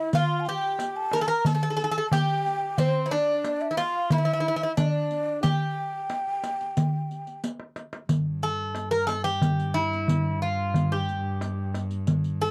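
Soulful and longing, this short cut from a longer Turkish makam ensemble piece moves in a straight, even four. A Greek bouzouki carries the melody up front, its picked double strings sounding metallic and partly octave-doubled. Above it, a breathy, mellow ney plays a second line with vibrato, a crisp attack and an unsteady quality until 7.4 seconds, when a drum fill takes over. The small, high-pitched clay darbuka, played with soft hands, and a riq with dark jingles keep the percussion going throughout, both carrying a vintage, band-limited tone. From 8.1 seconds a single bowed cello holds a rich, smooth drone with vibrato beneath the bouzouki. The sound is dry and close, in the manner of a 1970s studio.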